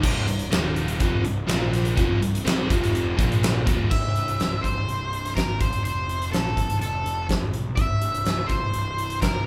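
A huge arena drum kit with a fat snare and punchy kick drives this sunny, swaggering classic rock excerpt at 124 BPM, together with a fuzzy, overdriven picked electric bass and a scooped, double-tracked overdriven guitar riff that stops at 3.9 seconds, when a dark, distorted octave-fuzz lead guitar takes the melody up front over C and F chords, all captured as a band playing live in one room with light reverb.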